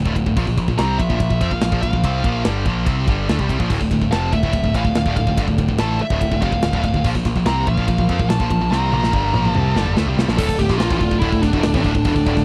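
A driving 144 BPM in straight 4/4 pushes this aggressive, epic heavy metal excerpt in D minor, cut from a longer piece. Two guitars grind out the riff together from the start: a bright, overdriven picked guitar and a quieter, scooped high-gain guitar, while a growling picked bass with overdrive and a direct, amped edge anchors the low end. A tight acoustic drum kit, mid-forward with a medium-tuned snare, tight kick and a rolled-off top, drives with crash, ride and toms, and a drum fill from 8.7 to 10.4 seconds leads into a new section. A high-gain lead guitar with a warm, distorted tone carries the melody from 0.8 seconds, reaching up to Bb5, and at 3.7 seconds a very quiet, lush symphonic string section adds smooth, bowed sustained chords with vibrato. The harmony moves between Bb5 and Dm, and the whole mix sounds dry and close, like a 1970s studio recording with little reverb.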